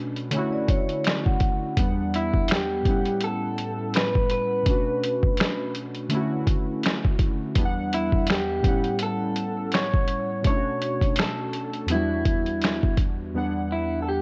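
A melancholic, nostalgic lo-fi hip hop excerpt where warbling, detuned synth keys with chorus and a mellow filtered tone sit up front beside a compressed, pitched-down sampler-style kit of thumpy kick, snare, hi-hat and finger snaps, as a soft-mallet vibraphone rings briefly through tape echo before a slightly broken-up electric guitar through a small old amp carries the melody from 2.2 s over cycling jazzy chords like Dmaj7, Em7, A13 and Bm9 in a light reverb.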